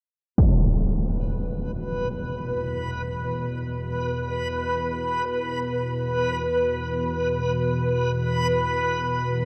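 Dark ambient drone, desolate and bleak, cut from a longer piece and bathed in a cavernous reverb. A huge, muffled impact strikes at 0.4 s. A reversed, granular texture then swells in at 1.4 s, bright, dreamy and detuned, and at 1.6 s a tense, string-like bowed drone settles in low beneath it, sawtooth-edged with ring-modulated grit and vibrato.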